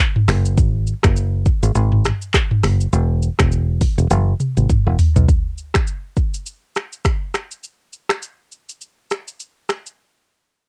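A fingered electric bass sits up front in this smooth, mellow afrobeats excerpt, its foam-muted tone warm, punchy and direct as it moves low between E1 and B1 from 0.3 seconds. Alongside it, an electronic, produced afro-pop drum kit, also up front, sets a 102 BPM groove in 4/4 with a relaxed sixteenth-note swing, entering at 0.2 seconds. The kit combines a deep kick, warm hi-hats, rim clicks, shaker, finger snaps, handclaps and toms, and it carries a cassette-tape coloring. A drum fill starting at 4.1 seconds closes the first section. The bass drops out at 5.3 seconds, leaving the drums alone through the second section. The home cassette recording is close and dry, with little reverb, and the instruments are tuned slightly sharp to A4 = 445 Hz.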